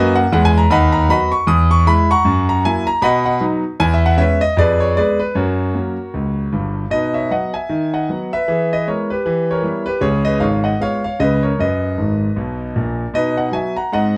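A clear concert grand piano opens this exuberant, playful stride jazz fragment, cut from a longer piece, playing alone and up front in a swinging 4/4 with a deep bass and long sustain. The harmony moves through rich colours such as Emaj13, Fdim and a turn to Em, and a piano fill from 12.0 to 13.1 seconds leads to the close on a B chord. A moderate club reverb gives the natural tone a lively sense of room.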